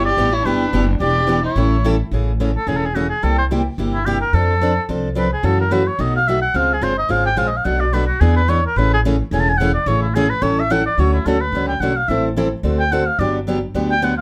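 Playful, charming jazz manouche swinging briskly at 217 BPM, in which a classical-style oboe with vibrato and a soft attack carries the melody up front and takes a solo from 2.1 s, a close, bowed violin with expressive portamento adds a warm second line only until 2.0 s, a bright picked steel-string acoustic guitar supplies the chords, and a woody, thumpy pizzicato upright bass on gut strings anchors the low end, all in a small room with moderate reverb as the harmony settles into D major at 11.0 s.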